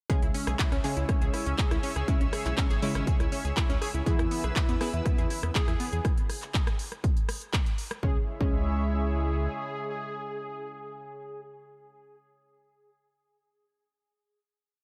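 A heavy, tape-warm electronic kick pounds four-on-the-floor at 121 BPM in straight 4/4, joined by a techno kit of smooth hats, handclaps and rim clicks, while a round, deep analog bass gallops in sixteenth notes with sidechain pumping. This driving, dramatic melodic techno piece in C# minor opens straight on its drop with a lush, warbling unison pad, a tight, detuned arpeggiated sequence colored by cassette tape and analog delay, and punchy, bright brass stabs in the background, each pulsing with sidechain pumping, as a very quiet, evolving drone enters at 1.3 seconds. A bold, fat, wave-folded synth brass riff arrives at 4.1 seconds over the move from C#m to E, and once the kit stops at 8.0 seconds a final C#m chord rings out in light reverb.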